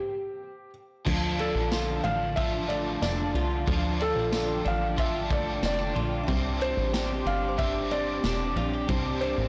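A straight 4/4 pulse at 92 BPM carries this haunting, melancholic dream pop excerpt in D minor, cut from a longer piece. A soft, felt-muted upright piano opens alone with the melody, its intimate tone touched by delay, before the band arrives at 1.1 seconds on a Dm chord that shifts to Csus2 at 6.3 seconds. A vintage acoustic kit with a punchy kick, medium-tuned snare, dark cymbals and tambourine sits beside a plucky analog bass that is funky and up front, thickened by tube saturation. A bright, overdriven electric guitar adds accompaniment through harmonic tremolo and ensemble chorus, while a clean, compressed twelve-string plays arpeggios with subtle chorus and delay. A warbling, nostalgic tape-like pad with chorus and built-in reverb holds sustained chords in the background, and a very quiet, inharmonic FM chime rings through from 1.6 seconds, all within light small-room ambience and a blown-out, overdriven recording.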